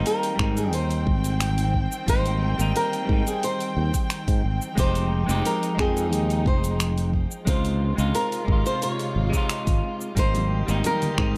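Sunset chillout with a smooth, warm mood, cut from a longer piece, where a fingerpicked flamenco guitar with fresh strings carries the melody through digital delay over a dark, clean semi-hollow electric guitar bathed in tape echo, a bowed string section with light vibrato and 12-bit sampler grit, an up-front, growly fretless bass, a deep electronic kick and a deep house kit of finger snaps, dark hats and shaker, while bongos and congas slip in quietly at 10.3 seconds and a glassy, drifting harmonics texture with chorus appears faintly at 10.5 seconds, all in a light reverb.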